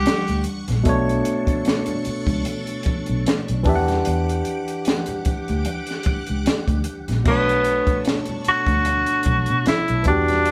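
A lightly swung 75 BPM groove in B minor from a compact, dark-toned cocktail drum kit with a punchy kick and high-tuned snare, plus very quiet ringing low-tuned congas, carries this soulful, introspective neo-soul R&B piece. It moves between Em9 and Bm9 over a round, foam-muted fingered electric bass, with a barky tine electric piano up front, a swirling phased string machine glowing softly behind, and a vintage tenor saxophone whose vibrato-laden jazz melody sounds briefly at the start and returns at 7.3 seconds, all in a moderately reverberant live room.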